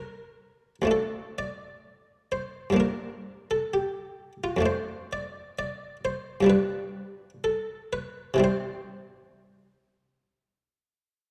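A buff-stop harpsichord plays alone, close and up front, its muted, lute-like pluck sounding full and dry in this brief, radiant and serene baroque-style suite movement. Taken in a gently rubato 4/4 at roughly 59-66 BPM, it moves from C/E through Dm and Gm7, settling into C major at 4.6 s before a G7 resolves to C at 8.4 s. A moderate recital-hall reverb and a dark production round out the sound across its range from D2 to D5.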